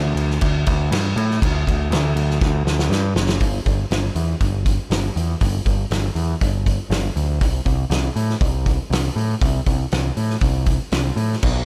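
Blissful and dreamy, this shoegaze and dream pop rock cut moves at 120 BPM in a straight 4/4, tuned slightly flat to A4 = 439 Hz, with a growling, round picked electric bass pushed up front through overdrive and a loose indie drum kit heard in a roomy studio with a fat snare, punchy kick and dark cymbals, whose fill from 2.4 to 3.4 seconds leads into the longer second section of a dry mix with little reverb.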